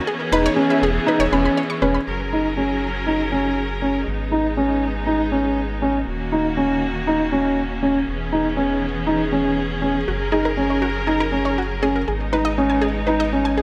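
A soft, felt-muted upright piano sits up front with a mellow riff in a narrow middle range, its tone darkened by a low-pass filter and trailed by tape echo, and from 2.1 seconds a filter sweep gradually reshapes its sound. This is a melancholic, intimate piece of piano and strings electronica at 120 BPM in a straight 4/4, heard as an excerpt cut from a longer work. Beneath it, a bright studio string section holds lush, bowed chords with vibrato, moving through E6, F#add9, G#m and D#m7, while a round, deep analog bass anchors the low end with a dark, sustained tone. An analog pluck with a detuned sawtooth edge and a noise layer plays arpeggios high above, dressed in chorus and tape echo; it drops out after the opening seconds and returns at 10.1 seconds. The whole mix sits in a moderate scoring-stage reverb with a touch of small-room ambience, giving it an enclosed, reflective feel.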